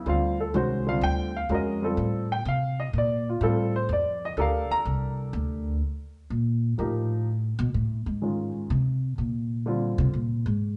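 A slightly detuned upright piano with short sustain and a plate reverb carries the melody in this relaxed, swinging jazz trio excerpt in 3/4, taking the solo spot for the first 5.8 seconds. Then the woody, pizzicato upright bass with steel strings steps forward for its own solo until 10.8 seconds, both instruments sitting up front. The whole take is set in a wet club room heard from further back, with a rolled-off top.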